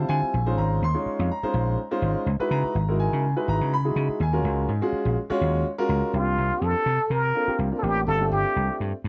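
Driving and nocturnal, this short excerpt of electric jazz fusion moves at 124 BPM in 4/4 with a light sixteenth-note swing. A dark concert grand piano plays accompaniment from the start, its mellow, boxy tone carrying deep lows and long sustain, while a punchy, amped vintage slap bass sits up front beneath it. The harmony moves through minor eleventh chords, Bbm11, Dbm11 and Ebm11, before shifting to suspended ninths, C9sus4 and G9sus4. At 6.1 seconds a trumpet with plunger mute enters as the soloist, its breathy, wah-wah voice shaped by vibrato, a soft attack and a smooth top in a jazz style. Light reverb surrounds the close, forward sound of the parts.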